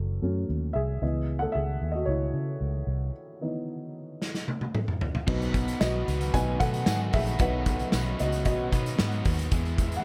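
Lightly reverberant, this driving, dramatic piano-driven pop excerpt at 113 BPM opens on a dark, woody upright piano with plate reverb, audible action noise and a slightly detuned, vintage character, played over F#m and C#m7 and carried by a round, foam-muted fingered electric bass. A loose indie drum kit in a small, pumping room enters with a fill at 4.2 seconds, and at 5.3 seconds the harmony moves to B. A double-tracked, overdriven electric guitar riff and a lush, bowed string section join there, with the strings and a jingly tambourine sitting in the background behind the piano.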